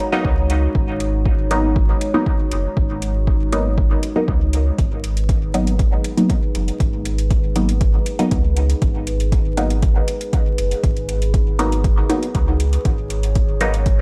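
Dub techno at 119 BPM in 4/4, this nocturnal, deep cut from a longer piece sits on a single G#m7 chord in G# minor for its 14 seconds. A dark analog pad holds sustained chords from the opening instant, its detuned sawtooth and triangle tones softened by a slow attack, chorus and phaser, and pumped by sidechain compression. Up front, a filtered dub chord stab enters at 0.1 seconds with muted, plucky sawtooth and square-wave hits that carry phaser and a trailing dub echo. A clean, smooth sine sub bass and a punchy, layered electronic kick arrive together at 0.2 seconds, the bass thickened by transformer saturation and the kick set forward with studio reverb. Metallic, overdriven electronic hi-hats join at 0.5 seconds low in the mix, and the whole recording has a dry, gritty hardware character flecked with vinyl crackle.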